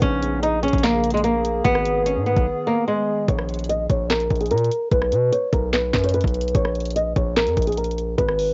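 A fingerpicked flamenco guitar leads this melancholic, menacing trap excerpt, its acoustic tone up front and softened by a low-pass filter and cassette-tape coloring. Beneath it, a hard-hitting 808-style bass delivers punchy, heavy sine notes with a noise layer, a fast attack and a decaying tail. An electronic trap kit sets a half-time feel, pairing a knocking kick and sharp snare with bright hats, rim clicks and handclaps. In the background, a warbly, nostalgic pad of detuned square, triangle and sawtooth tones holds mellow sustained chords through chorus, phaser and reverb until it drops out at 3.3 seconds. A brief break arrives at 2.5 seconds, and from 3.3 seconds a filter sweep runs across the guitar line. The recording has a home-cassette character with light reverb and a dulled top end.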